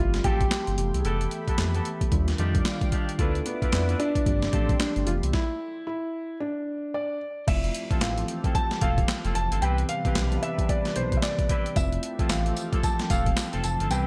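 New jack swing R&B at 112 BPM with a bouncy, slick swung feel, built on a gritty, overdriven boom bap sampler-style kit with thumpy kick, snare, handclaps, hi-hat, tambourine, crash and gated reverb sitting up front beside a smooth sawtooth synth bass. A dark, intimate concert grand piano carries the melody with audible action noise over a mellow tine electric piano, a swirling analog pad with phaser and chorus in the background, and tight, vintage horn-section stabs with light vibrato, moving through lush ninth chords before a stop from 5.3 to 7.5 seconds. The bright 1980s-style digital production adds light reverb, and this excerpt settles onto Fmaj7 and Cmaj7 in its second half.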